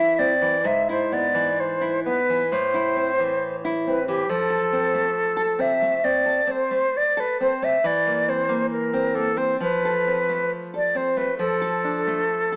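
This romantic duo for flute and classical guitar, cut from a longer piece, carries a yearning, melancholic mood in 4/4 with uneven beats and free rubato. The silver concert flute sings the melody between G4 and E5 with a pure tone, vibrato and a soft attack. The nylon-string guitar, fingerpicked and full-bodied with a deep classical character, plays the accompaniment across a range from G#2 to A4. Both instruments sit up front and play throughout the 12.6 seconds, moving from a rootless Am through E/G#, F and C7/E before settling on Dm/F. A moderate recital hall reverb surrounds them, while an AM radio sound colours the recording, tuned to A4 = 441 Hz.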